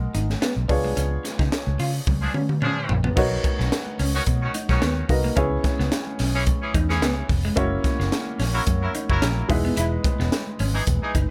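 Riding a 109 BPM 4/4 groove with a light sixteenth-note swing, this slick, nocturnal slice of polished 1980s jazz-funk pop sets a punchy, gritty fusion drum kit with a high-tuned snare and a round, foam-muted fingered bass under present baby grand piano chords touched with subtle chorus, a dark, slightly broken-up guitar riff bathed in lush chorus and very quiet high-tuned congas, as a band accent and drum fill lead at 3.2 seconds into a section moving from Bmaj9 through C#m7 and F#7 to Emaj7, with a loose, clear vintage horn section carrying a second line up front from 2.2 seconds in this dry cut from a longer piece.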